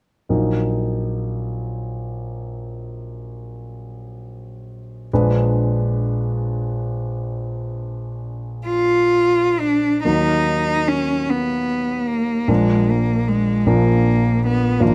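A slow, rubato 12/8 sways at 50 dotted-quarter beats per minute in this solemn, melancholic romantic classical passage in E-flat minor, cut from a longer piece. A vintage-toned grand piano opens alone at 0.3 s with smooth, up-front accompaniment over Ebm/Bb and a brooding Bb7b9. At 8.7 s a single bowed cello enters with a rich, even, vibrato-laden melody placed close and forward, as the harmony settles onto Ebm and Bb inside a moderate stone-room reverb.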